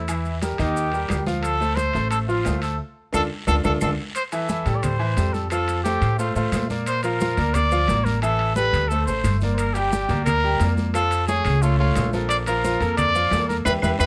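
Close, detailed and lightly reverberant, this passionate, driving salsa cut in D minor at 177 BPM puts a vintage, vibrato-laden trumpet with plate reverb and a growly, thumpy pizzicato upright bass up front over a bright, polished concert grand piano, while ringing timbales, thin-skinned congas, raspy guiro, grainy maracas and faint, woody claves sit in the background, with band accents at 2.8 and 13.7 seconds and a drum fill at 3.5 seconds.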